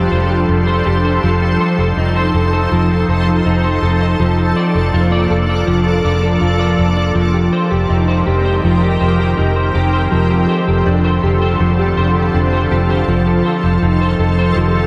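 Dream pop with a blissful, ethereal mood, this excerpt floats at an unhurried pace over a straight feel, its harmony drifting through lush extended chords built over a steady F in the bass. A shimmering, detuned pad holds sustained chords throughout, its slow attack and long release blurring into a bright, granular haze with an octave-up shimmer, chorus and its own reverb. Up front, an electric guitar at the edge of break-up plays arpeggios, its tone slightly gritty yet glowing, coloured by analog chorus and analog delay. A vintage fingered electric bass, dark, round and foam-muted, sits prominently beneath on a single low F. At 10.4 seconds a very quiet vibraphone struck with hard mallets enters as texture, metallic and ringing with a medium motor vibrato. The whole mix is echo-heavy, bathed in a moderate spring reverb that lingers for about 2.5 seconds.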